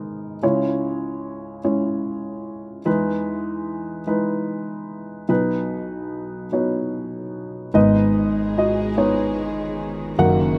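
Dry and close, with almost none of a room's reverb, this heartbroken, intimate folk fragment in G# minor and slow 6/8 at 49 BPM centres on a dark, mellow upright piano carrying the melody with audible action noise and a woody, slightly detuned tone, joined at 7.7 seconds by a bowed chamber string section holding sustained chords with vibrato and sul tasto, and at 7.8 seconds by an acoustic pizzicato upright bass with steel strings, as the chords move from C#m through Emaj7 and B to G#m.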